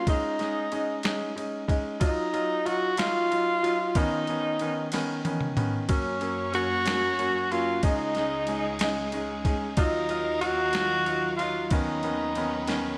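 A heartfelt, romantic six-eight pop ballad at 62 BPM, this excerpt sets a mellow tenor saxophone melody, jazz-styled with light vibrato, scooped notes, a roomy tone and a digital delay, over a clear concert grand piano with deep bass and long sustain. A gritty, compressed boom bap sampler-style drum kit with a thumpy kick and overdrive plays up front, with a fill from 4.9 to 5.9 seconds leading into the entry of a bright, lush studio string section with sustained bowed chords at 5.9 seconds. The harmony moves through C#sus2, D#madd9, Badd9/D# and F#, all in a moderate recital hall reverb.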